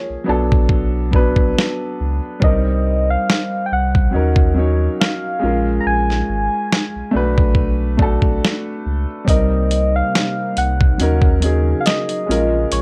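This reflective, melancholic lo-fi hip hop piece at 70 BPM opens on an intimate, woody upright piano with audible action noise and a vintage cassette tape character, alongside a gentle, keys-like FM synth lead with chorus and vibrato, both treated with plate reverb. A deep, round sine sub bass enters at 0.1 s, and at 0.5 s a gritty, compressed sampler-style drum kit joins up front with a thumpy kick, a medium-tuned snare and hi-hat over lightly swung 16ths. At 9.3 s a detuned sawtooth analog pad eases in with a soft attack, adding mellow sustained chords in the background of the light, tape-hued room.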